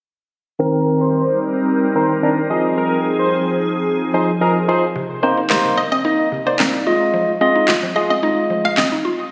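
A thick, wave-folded unison lead, a barky tine electric piano and a glassy FM pad with slow attack enter together at 0.6 seconds under a filter sweep, opening this energetic, confident dance-pop excerpt over minor seventh chords. At 5.0 seconds a woody, mallet-like synth pluck takes up arpeggios, fat, layered electronic handclaps and snare join at 5.5 seconds, and a hollow, bouncy square pluck carries the melody with chorus and tape echo. The electric piano sits up front throughout, while a lush hall reverb and a phone-in-the-room capture lend the mix a roomy, compressed sheen.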